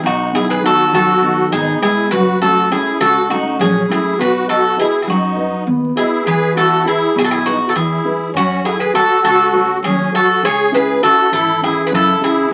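A metallic, double-strung Greek bouzouki sits up front with the melody in this relaxed Greek folk bouzouki band excerpt, moving in a straight 7/8 at 202 BPM over chords that run from B6 through F#m, B, E and C#m. Behind it a reedy, shimmering musette accordion carries a second line, a dark, thumb-plucked classical nylon-string guitar supplies accompaniment, and a woody, growly pizzicato upright bass anchors the low end. The sound is that of a very old 78 rpm record, with vinyl crackle and a wet studio reverb.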